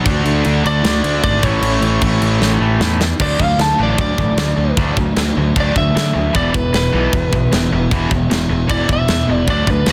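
Dense, heavily limited and lightly reverberant, this rowdy, rebellious punk rock excerpt at 153 BPM in D major opens in half time, with a raw, overdriven garage guitar in the background, a tight, distorted rhythm guitar, a round, punchy fuzz bass and an up-front, big-room drum kit with bright cymbals and a soft-clipped kick, until a drum fill at 2.4 seconds leads into a dark, slightly broken-up lead guitar solo with tape echo from 3.2 seconds.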